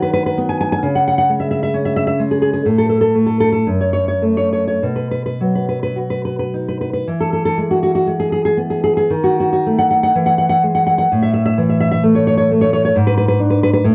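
A romantic solo classical guitar piece with a sunny yet nostalgic mood, moving in an unhurried 2/4 with free, rubato phrasing across a short stretch cut from a longer work. The nylon-string guitar sits up front with a dark, thumb-plucked tone on fresh strings, shifting into a new section at 7.1 s where it settles onto E major and passes through diminished colours. The close, dry 1970s-style studio sound carries only a light touch of reverb.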